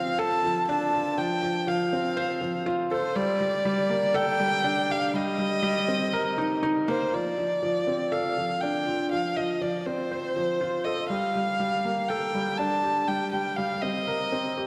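Drenched in a wet concert-hall reverb, this intimate, hypnotic 121 BPM electronica fragment in G minor sets a dark, woody solo violin, bowed sul tasto with vibrato and placed up front, singing the melody over a soft, felt-muted upright piano riff whose low-pass filtered, mellow tone carries audible action noise, the two playing throughout as the Dm7, F, Gmadd9 and Cm7 progression cycles once and then repeats from 7.1 seconds.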